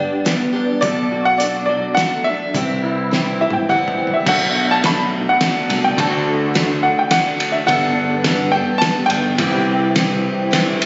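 Folk rock with a heartland rock lean, this short cut from a longer piece moves at 105 BPM in a straight 3/4, with a hopeful, warm mood. A baby grand piano carries the melody up front in a high register, while a boxy picked acoustic archtop guitar with fresh strings sits in the background as accompaniment. An electric guitar through a small old amp plays a slightly broken-up, compressed riff with ensemble chorus, and a bright, punchy picked electric bass enters at 0.8 s in a low range. The cloth-damped drum kit comes in at 0.3 s, sounding muffled and gritty, with dark cymbals, a fat snare and a tight kick, and it plays a fill from 3.1 s into the second section. The chords move from G through Bm7 and C to D and Gadd9, and the whole recording has light reverb, compression and a dull, phone-in-the-room character with its top end cut.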